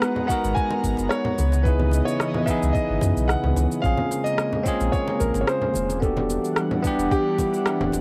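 Recorded at home on cassette in a small booth with a short, moderate ambience, this brief cut from a longer sunset chillout piece has a smooth, wistful, vintage character at 110 BPM in 4/4, with a light 16th-note swing. A warm concert grand piano carries the melody between G4 and G#5, its intimate tone carrying audible action noise and colored by cassette tape, tape echo and plate reverb. Beneath it, a bell-like tine electric piano sits up front with a bright, clean accompaniment, also treated with tape echo and plate reverb, while an airy, breathy pad holds slow-blooming, detuned chords with chorus and a long release. The rhythm bed layers an electronic rim click and cabasa, ringing acoustic congas played with hard hands from 0.2 seconds, and a soft, tape-colored electronic kick from 0.3 seconds. A deep, round sub bass enters at 0.4 seconds as the most forward part, moving through mellow minor-ninth harmony from G#m9 to C#m9, A#m9 and Em9 before a band accent at 7.7 seconds.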